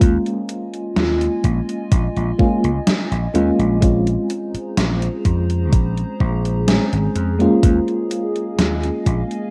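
From the first moment, this nostalgic, hazy vaporwave fragment layers a soft, round FM electric piano with tremolo, subtle chorus and analog delay over a detuned, lo-fi pad drifting through chorus, phaser and its own reverb, while a punchy, amped slap bass and a thumpy, overdriven electronic kick sit up front beside a gritty 80s drum machine whose hi-hat and gated-reverb snare sound re-recorded in a small room, all passing from Eb9sus4 to Bbm9 and back in a rough cassette demo mix with light reverb.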